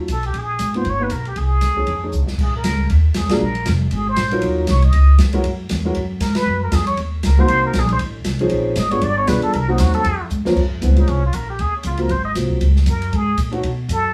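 A cool, swinging small-group jazz excerpt in Bb minor, captured with the band playing live in one room under moderate studio reverb, moves at a brisk 235 BPM with a light swing feel. A plunger-muted trumpet carries the melody up front with a breathy, wah-wah tone, vibrato and scooped notes, while a woody, thumpy pizzicato upright bass and an open-voiced concert grand piano with deep low end fill out the harmony. An airy acoustic drum kit with dark cymbals and a boomy kick drives underneath, marking the form with fills at 2.1 and 10.3 seconds and joining the band in accents at 3.3 and 6.3 seconds.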